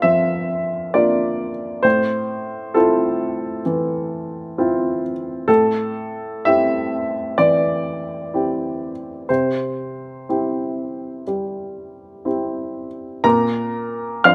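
The sound is dry and close, captured outdoors with the piano placed up front, so the mechanical action noise of the instrument sits audibly in the picture. This is a reflective, intimate fragment of neoclassical minimalist piano music, played solo on a baby grand with a warm, natural tone and short sustain that lets each chord fade quickly. The playing moves in rubato at roughly 58-67 BPM in 4/4, rooted in A phrygian and spanning A2 to F6. The harmony drifts from Bb through Fmaj7/A, Am7 and C across the first 13.2 seconds, before a brief new passage opens on a bare Bb5 and the fragment is cut off at 14.3 seconds.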